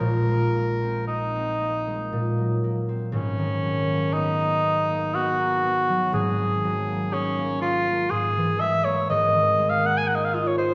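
The mellow cor anglais carries the melody from 0.0 to 10.7 seconds, its smooth top ranging from Db4 to Ab5 in a classical solo style that sits up front. Beneath it, a concert harp supplies fingerpicked, ringing accompaniment across the same span, reaching from Ab1 to Ab4. This brief excerpt, cut from a longer classical piece, is an impressionist duo in 3/4 at 60 BPM with a rubato feel and a hazy, wistful mood, tuned to A4 = 439 Hz. The harmony drifts through colourful chords such as Abadd9/Bb, Abm11 and Gbadd9/Ab before settling on Absus2. A wet recital hall reverb surrounds the pair, heard from further back in the room.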